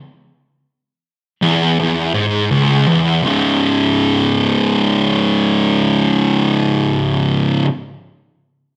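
A thick, dark fuzz guitar, distorted, double-tracked and up front, plays alone from 1.4 to 7.7 seconds in this ominous, brooding metal excerpt, its picked low notes moving from a C# minor chord to a C#5 power chord inside the wet reverb of a large studio.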